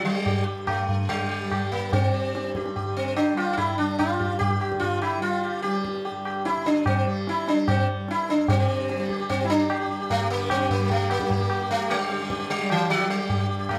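A live-room studio sound with moderate reverb carries this introspective, solemn Hindustani classical passage in raga Bhimpalasi on G, cut from a longer piece. Up front, a bright, buzzing sitar plucked with a plectrum leads the melody, its sympathetic strings shimmering, over a softly plucked tanpura drone, while a low-tuned tabla with a short ring enters at 0.3 seconds. Set at 147 BPM in 4/4, the performance speeds up throughout, moving into a new section at 8.5 seconds.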